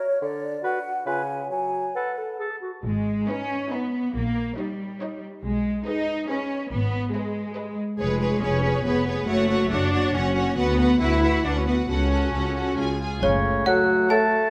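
This cinematic, whimsical film cue, cut from a longer piece, opens with a small flute group whose airy, hollow tone carries a second line, joined almost at once by a mellow bassoon, a shadowy clarinet and a gently vibrato-tinged oboe in a sneaky, quirky woodwind phrase in G# minor. Moving at 139 BPM in a straight 3/4, the music hands over to the strings at 2.8 seconds, where up-front cello and double bass sections lay down a lush, bowed bass line, soon topped by a smooth violin melody, a second violin line placed further back, and a focused viola accompaniment. Through this string passage the harmony drifts toward F# minor, with dominant chords lending the passage its playful character. At 13.2 seconds the woodwinds return for a brief reprise, now joined by a woody, dry xylophone carrying the melody and a dusky French horn section holding a sustained chord. The whole cue sits in a moderate scoring-stage reverb that lends the distant reeds and horns a roomy, classical sheen.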